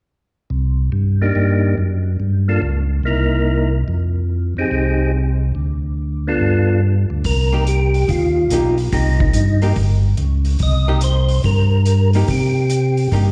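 A swung 4/4 groove at 143 BPM drives this bluesy, late-night soul jazz organ trio cut in C minor, taken from a longer piece and heard live through a venue's PA with recital hall reverb. A full, lightly overdriven tonewheel organ carries the bass line from 0.5 seconds, its key click and slow rotary speaker up front, while a second, percussive tonewheel organ with third harmonic percussion takes the melody from 1.2 seconds in a mellow, round tone spun through a fast rotary speaker with slapback echo. The harmony moves from Cm7 through Gm9, C7#9, Fm7, Dm and G7 before returning to Cm7 as a new section begins at 7.2 seconds. There a muffled, gritty vintage drum kit enters on hi-hat and a punchy kick, its top rolled off, and a clean, compressed archtop guitar follows with picked, hollow-body accompaniment and its own slapback echo.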